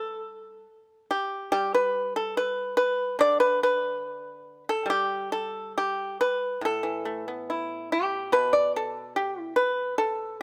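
Closely and intimately recorded with a light touch of reverb, this flowing, elegant 10.4-second passage of Chinese traditional music, cut from a longer piece, features a solo pipa played with fingerpicks up front, its mellow yet dry and percussive tone moving freely in a rubato feel across a range from A2 to D5.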